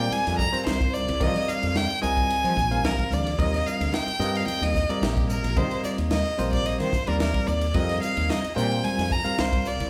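A slick, funky electric jazz fusion passage in Eb major at 110 BPM with a light sixteenth-note swing opens on an up-front bowed violin melody with focused vibrato over a bell-like tine electric piano and a growly, round fretless bass, joined at 0.1 seconds by a crisp drum kit with a punchy kick and high-tuned snare, which plays a short fill at 3.0 seconds, and by soft, very quiet congas, all captured as a band playing live in one room with moderate large-studio reverb, as an Ebmaj9 harmony gives way to F9sus4 at 7.7 seconds.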